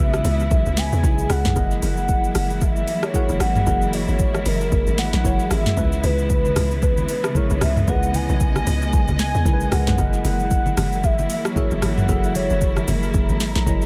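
Deep and hypnotic, this short amapiano cut moves with a swung sixteenth-note feel over a C#m7 to F#13 progression. An electronic, up-front afro-pop drum kit drives it, its deep kick, sharp snare and metallic hats joined by rim clicks, shaker and toms, while a hollow log drum bass bounces underneath with a fast, percussive, decaying attack. A velvety, mellow synth lead carries the melody, sustained with vibrato and chorus and trailed by dub echo. A clean tine electric piano supplies the accompaniment through phaser and dub echo, and a rich bowed string section holds expressive sustained chords that pump against the beat. From 6.0 seconds, very quiet congas with damped, low-tuned skins add soft-handed detail to a dry, echo-heavy mix.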